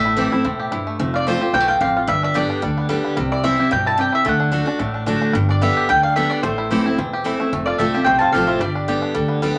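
A small, reverberant room gives this short bluegrass clip a close, lively sound, cut from a longer piece. At a driving 221 BPM in 4/4 with a light swing on the eighths, the band moves through a rustic minor-key progression of Am, F, G, C, D and back around. Up front, the mandolin carries the melody with its woody, double-string tone, joined by the twangy, percussive fingerpicked banjo sitting a bit lower in the mix. The bright, full-bodied dreadnought acoustic guitar picks the accompaniment prominently, while the upright bass thumps out a dark pizzicato low end. Near the end, at 7.7 s, a lap resonator guitar slides in quietly in the background with a metallic, nasal second line.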